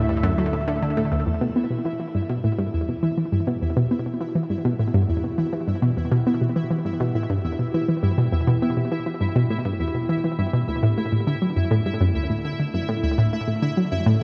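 Ambient, sequencer-driven space music with a cosmic, expansive mood, this section cut from a longer piece opens on a very quiet, smooth synth lead and a deep sine sub bass that both fall away by 1.2 seconds, while a bright, up-front detuned analog pluck riff with chorus and delay carries on beside a pulsing, tempo-synced gated texture bathed in shimmer reverb and a swirling phased pad that fades in from 1.3 seconds over Dsus2 and Emadd9 chords, all set in a dark, warm plate-reverb space.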